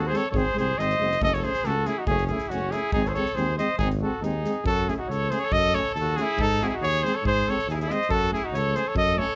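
Restless and fiery, this short Balkan brass band cut at 139 BPM in 2/4 sets a warm cornet with light vibrato up front on the melody, while a bright, distant trumpet carries a second line, a close-miked, mellow tuba holds the bass with a gentle waver, a dark, smooth-topped euphonium and a roomy French horn with slight vibrato accompany from the background, and a soft-mallet acoustic drum kit, its fat snare and boomy kick ringing in a big room, plays beneath the band over chords alternating between G# and F#m under light reverb.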